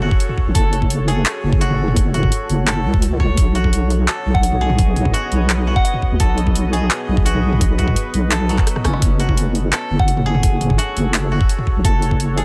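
Spacious and heavy, this half-time drum and bass excerpt moves at 170 BPM in 4/4, set in F# dorian and shifting from F#m to B and back to F#m at 9.0 seconds. A deep, wobbling bass built from square and sine waves sits up front with chorus, its detuned, compressed tone carrying dark weight, while a moody, evolving pad of detuned sawtooth unison with a sub octave holds sustained chords beneath, breathing with sidechain pumping, chorus and its own reverb. Over this, a dry, woody koto played with fingerpicks traces arpeggios through tape echo. The electronic kick knocks with overdrive, joined by an overdriven kit of handclaps, bright hats, rim clicks and toms, with a drum fill at 8.7 seconds. A pure FM bell rings F#5 in the background at 4.3 seconds and again at 10.0 seconds, treated with chorus, phaser and tape echo. The mix is dry, with little room sound around the parts.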